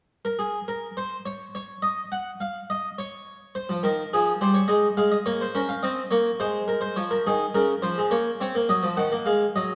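A full, brilliant harpsichord with three sets of strings and an airy, plucked Italian character sits up front in a moderate recital hall reverb, playing a solemn yet driving baroque-style two-part invention in 3/4 that moves from a chordless opening through Fm, Bbm and Abadd9 toward Ebm in this short cut from a longer piece.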